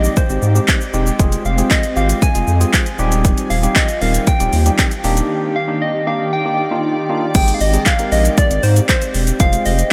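Driving and confident, this dance-pop fragment moves in a straight four over a dreamy, reverb-soaked mix that moves from Abmaj7 through Fm and Cm/Eb to Ebmaj7, with a break from 5.3 to 7.3 seconds. A round, bright FM synth lead carries the melody, while a barky, lightly overdriven tine electric piano and a shimmering, ethereal pad sitting in the background, both pumping against the kick, fill in the chords. Underneath, a thick saturated sub bass and an up-front, overdriven electronic pop kit with punchy kick, metallic hats, handclaps, shaker and crash push the groove.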